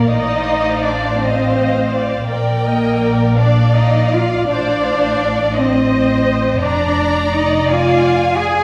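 Classical slow romantic movement for string orchestra in 6/8 at 55 BPM, played with tender, lyrical rubato in a short section cut from a longer piece. A rich, close violin section sings the melody with expressive vibrato over a second violin line with portamento, a focused, lush viola accompaniment with a smooth top, an even cello bass, and a soft-attack double bass, all five sections playing throughout the 8.6 seconds. Chords move from F7/A to Bb and back before settling on Ddim/F, and the strings are heard from further back in a wet scoring-stage reverb.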